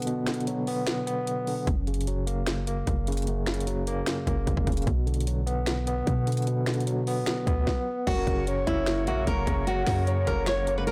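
A gritty, barky overdriven tine electric piano with fast tremolo drives this eerie, hard-hitting half-time trap excerpt at 150 BPM over Bm and F# chords, joined by an up-front trap kit of hard-clipped kick, sharp snare, metallic hats, finger snaps and crash. A deep, boomy 808-style bass enters at 1.7 seconds, and from 8.1 seconds a fingerpicked flamenco guitar melody arrives alongside a soft octave-layered synth lead with chorus and delay in the background and airy flute chords with vibrato, the recording itself sounding blown-out and overdriven.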